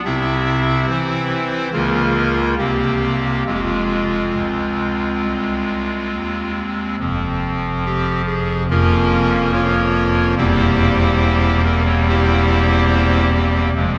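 A wet church reverb with a 3.5-second decay surrounds this solemn, grave chorale-style excerpt, heard from further back in the room, though the organ itself sits up front. A solo pipe organ voiced on a hollow clarinet reed stop, with baroque voicing, chiff and a tremulant, moves through F minor harmonies at a rubato 70 BPM in 4/4, spanning E1 to E5. Cut from a longer piece, the passage states its opening phrase twice, returning at 7.0 s and closing on a C7/E chord at 10.4 s.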